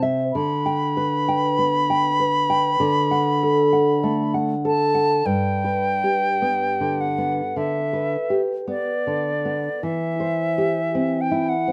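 Rubato in 4/4, this serene romantic duo excerpt sets a pure, soft-attacked silver concert flute with vibrato singing the melody up front over a dark, thumb-plucked nylon-string guitar with fresh strings, also up front, in dry outdoor sound as the piece moves into a new section at 5.3 seconds.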